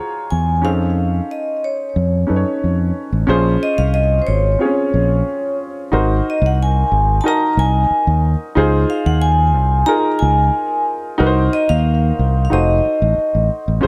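A ringing, metallic vibraphone with a slow motor vibrato and tape echo carries the melody through this silky, smooth clip of lush 1970s-style soul, over a worn concert grand piano with deep bass and short sustain and a punchy, up-front fingered electric bass that enters at 0.3 seconds, all set in light small-room reverb as chords like Ebm11, Bbm9 and Dbmaj7 drift toward a closing F7b9.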